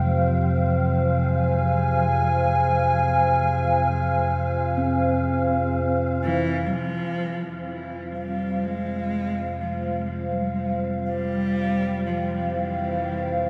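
A woody, bowed solo cello with vibrato enters up front at 6.2 s to sing a melody over this ominous, cavernous dark ambient drone in free time and F minor, where a rumbling, ring-modulated low drone sustains beneath a moody, detuned analog pad with chorus holding sustained chords, a soft bronze metallophone struck with padded mallets shimmers through tape-echoed arpeggios in the background, and a breathy, wind-like tuned noise texture drifts above, all set in a vast, echoing space.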